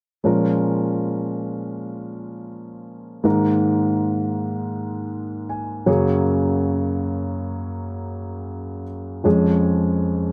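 Pop in free time, this brief excerpt carries a hopeful, tender mood through a single solo concert grand piano. The piano plays an accompaniment role from 0.2 to 10.3 seconds, its tone dark and mellow with deep bass, sitting up front in a dry room with little reverb. Its chords move from Bbm7 through Absus2 and Gbadd9 before settling on Db/F, and its part spans a range from F2 up to Ab5. A short piano fill between 5.1 and 6.3 seconds adds a moment of movement within the chordal backdrop. The intimate, close sound keeps the focus on the instrument's rich lower register and gentle harmonic colour.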